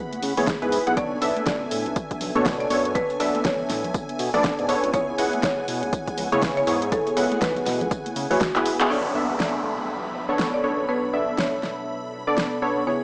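Round, detuned analog key stabs with chorus, tape echo and sidechain pumping open this late-night deep house excerpt at 121 BPM in B dorian, set against a shimmering vintage string machine in the background as the chords move between C#m7 and Bm9. A punchy overdriven electronic kick, a fat-snared deep house kit with handclaps and hi-hat, bright hard-handed congas, a very quiet gritty sampler-style kit with tambourine and a smooth, mellow sawtooth bass carry the swung 16ths, while a woody, dark marimba struck with hard mallets plays the melody through tape echo. The kick drops out at 8.5 seconds as a drum fill begins, and an electronic downlifter enters at 8.9 seconds, all within a dry, transformer-saturated, small-speaker sound with moderate digital room reverb.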